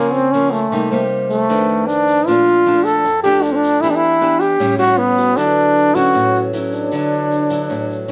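A straight 4/4 bossa nova pulse at 155 BPM drives this sunny, breezy fragment, with a grainy tube shaker set distant in a large room. Up front, a brilliant solo trombone carries the jazz-style melody with vibrato, soft attacks and scooped notes, while a small-sounding, fingerpicked nylon-string guitar with fresh strings and finger squeak accompanies, and a metallic, ringing vibraphone played with medium mallets, motor off, sits in the background, all inside a moderate studio reverb. The harmony moves from a rootless F#maj9#11 through Cm7, F6 and Bbmaj7 to Em7, A7 and Dmaj9.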